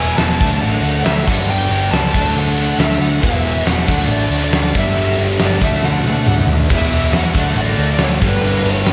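A straight 4/4 classic rock drive at 138 BPM opens this sunny, driving excerpt, where a dark, distorted bluesy lead guitar with slapback echo sings its melody over a stack of bright rhythm riffs from a double-tracked cranked stack guitar with tremolo and two distorted electric guitars, a round, punchy hollow-body short-scale bass, a barely audible piping tonewheel organ holding sustained chords through a slow rotary speaker, and a big rock drum kit up front with a fat snare and tight kick that enters at 0.2 s and fires off a fill at 5.8 s, all moving through D, G and E chords in a small, lightly reverberant room before a brief overdriven second lead line slips in at 8.7 s.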